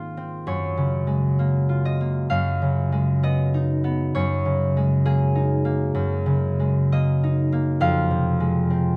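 Dreamy and peaceful, this short classical solo for concert harp is cut from a longer piece and drifts in a free, rubato 4/4 at around 59-68 BPM, tuned to A4 = 439 Hz. The fingerpicked harp sits up front with a ringing, acoustic tone, spanning F2 to F5 as it moves through lush Gbmaj9, Db9/Gb and Gb69 harmonies before settling on Fm at 7.8 seconds. Light reverb adds a soft halo, while a faint mains hum lingers beneath.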